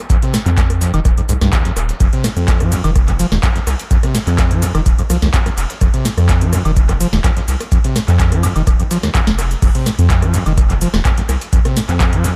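A dry, echo-heavy mix with little reverb opens this hypnotic, gritty acid house excerpt, cut from a longer piece, with a deep, overdriven electronic kick at its centre and a booming analog drum machine adding crisp snare, metallic hats, handclaps, rim clicks, woodblock, shaker, crash and ride, all soaked in dub echo. A squelchy, resonant sawtooth acid riff with a filter sweep runs throughout, distorted and tube-saturated with subtle chorus, dub echo and sidechain pumping, while a round, dark analog bass of blended triangle and sine tones joins at 0.5 s and pumps beneath it. Far back in the mix, a very quiet, dusty, compressed sampler-style soul kit adds hi-hat, shaker and a medium-tuned snare.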